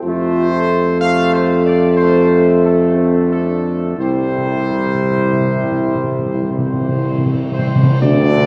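An up-front solo tuba anchors this majestic, triumphant classical fanfare with a clear, vintage bass line, moving at a stately 58-62 BPM in a straight 4/4. Above it, a dark trumpet section with a smooth top carries the melody. Meanwhile a tight trombone section and a mellow French horn section with light vibrato, set in the background, hold sustained chords. The harmony rests on F before moving to C at 4.0 seconds, when soft-mallet timpani with a round, close and dry tone enter for a fill, joined by a cymbal swell and tam-tam with bright cymbals. A brief full-band accent arrives at 8.0 seconds. The passage, cut from a longer piece, rings out in a vast, echoing cathedral space with moderate reverb.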